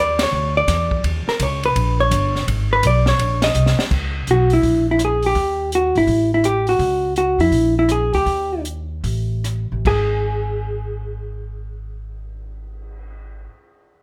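Moody and smoky, this short excerpt of small-group swing and bop moves at 142-167 BPM in 4/4, with a dark, clean hollow-body electric guitar carrying the melody up front over a woody, thumpy upright bass plucked on gut strings. An open acoustic drum kit in a small room adds dark cymbals, a high-tuned snare and a boomy kick, with band accents at 0.1 and 3.4 seconds, a drum fill just before the second section at 3.9 seconds, and a slowing down from 6.8 to 9.9 seconds, during which the harmony drops away at 9.0 seconds, all set in light reverb.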